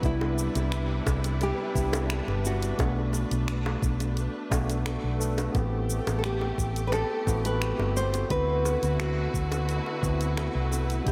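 Soaked in lush hall reverb, this dreamy, smooth and relaxed sunset chillout excerpt at 87 BPM pairs a fingerpicked nylon-string guitar melody with a bell-like, barky tine electric piano, both carrying tape echo, over bowed symphonic strings with vibrato, a round, dark hollow-body electric bass sitting up front, a soft electronic kick, an R&B kit of finger snaps, warm hats and shaker, and very quiet, high-tuned bongos, all moving through Cmaj7, Bm7, Am7 and D13.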